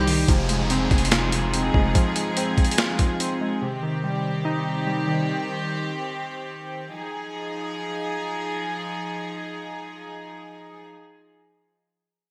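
A bright, 1980s-style digital sheen and a lush hall reverb frame this hard-hitting, melancholic half-time trap excerpt. Warbly, detuned lo-fi synth keys with chorus and soft, floating bowed strings carry the Fm7 and Cm harmony, while a growling, buzzy 808-style bass and a gritty, compressed boom bap sampler-style kit, with its thumpy kick and gated reverb, hit up front until 1.9 and 3.3 seconds. A faint electronic downlifter sits in the background, and once the keys stop at 6.1 seconds the string section holds on by itself.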